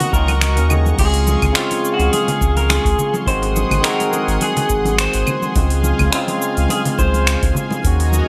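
Sunny and relaxed, this short sunset chillout cut from a longer piece rides a gentle swung groove. A slightly broken-up, lo-fi electric guitar through a small old amp carries the melody with a subtle chorus, falling silent at 7.5 seconds, while a barky tine electric piano through a combo amp fills in the accompaniment. A lush, warbling unison pad with chorus holds slow-attack sawtooth chords high above, and a round sine sub bass with tube saturation anchors the low end as the loudest part. The deep house kit brings metallic hi-hats, cabasa, claves, finger snaps and crash cymbal, overdriven with small room ambience and gated reverb, joined by a dry, overdriven electronic kick and soft-handed, damped congas tucked in the background. The harmony moves from Ebm7 through Dbmaj7 and Ab7 back to Dbmaj7, all set in a bright 1980s-style digital production with moderate plate reverb.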